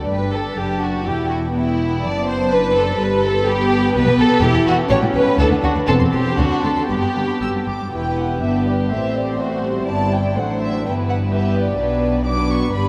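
A rich, up-front violin section carries the second line of this cheerful, graceful classical-period movement for string orchestra, a quick 124 BPM in 2/4 with a rubato feel, starting in G major before turning to E minor at 7.9 s. Above it a dark, floating violin section sings the melody from 0.1 s with a pure, smooth top. Beneath them, shadowy violas, a warm cello section and a dusky double bass section fill in the accompaniment and bass. Every section is bowed sul tasto with soft attacks, and all but the melody violins have close, intimate detail, all bathed in a cathedral reverb that sets the excerpt in a vast, echoing space.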